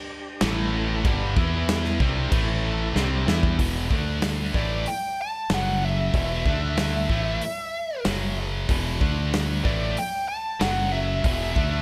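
Menacing and heavy, this hard rock excerpt opens on a gritty, overdriven tonewheel organ holding very quiet sustained chords through a slow rotary speaker, joined at 0.4 seconds by a crunchy, double-tracked guitar riff sitting in the background, two high-gain distorted guitars (one scooped), an up-front fingered electric bass and a punchy acoustic drum kit with bright cymbals in a big room. After a drum fill, the organ and crunchy guitar stop at 3.6 seconds as the solo section begins. At 4.6 seconds a bluesy lead guitar enters with a warm, distorted tone, carrying a melody treated with plate reverb and digital delay over the riffing guitars in an otherwise dry mix.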